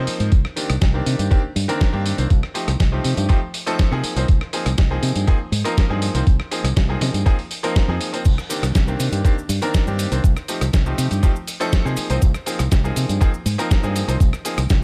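Nu-disco with a sleek, sensual mood, cut from a longer piece, where a punchy, up-front fingered electric bass and a thumpy, gritty electronic kick drive a straight groove over a Cm7, F7/C and Bb7sus4/C progression. A bright, worn concert grand piano with audible action noise and a digital delay plays the accompanying chords, while a dusty soul sampler-style kit adds tape-warm crash, hi-hat, rim click, medium-tuned snare and tambourine in studio reverb. A cabasa joins in the background at 8.2 seconds, and the overall sound is dry.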